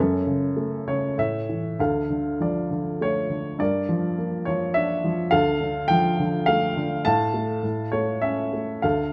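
Classical solo piano in a brooding, cool mood, this short fragment of a longer piece moves at 102 BPM in a rubato 3/4 in D harmonic minor, with a woody, polished upright piano placed up front by close, detailed microphones in a moderate recital-hall reverb as it passes from F#m and A into a passage built on Dm, Gm7, F/A and a closing A.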